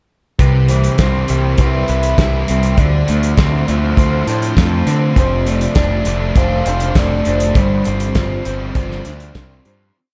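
A hollow, clarinet-like synth lead with chorus, phaser and digital delay sings a mellow, motif-based melody over a growling overdriven electric bass driving eighth notes, a loose indie drum kit with a tight kick and a pop groove up front, a thick fuzz guitar and a biting overdriven guitar with reverse reverb picking arpeggio riffs, and a shimmering, octave-doubled twelve-string acoustic guitar in the background, all in a wistful, blissful shoegaze and dream pop verse at 100 BPM in C major that moves from Cmaj7 through Dm7 and F6 to G7sus4 in a small, dark room before fading out from 7.6 seconds to 10.0 seconds.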